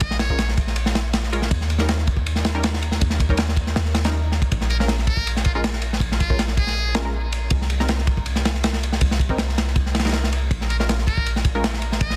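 A crunchy, gritty breakbeat kit with dark cymbals and a tight kick drives this raw, dark drum and bass and jungle cut at 160 BPM in Bb dorian, alongside a boomy, sine-based 808-style bass with tube saturation and a buzzy, brilliant metal-muted trumpet that calls out in short dub-echoed phrases, while detuned sawtooth chord stabs with chorus and dub echo sit muted in the background from 0.3 seconds over a Bbm7, Eb7 and Cm7 progression in a dense, heavily limited mix.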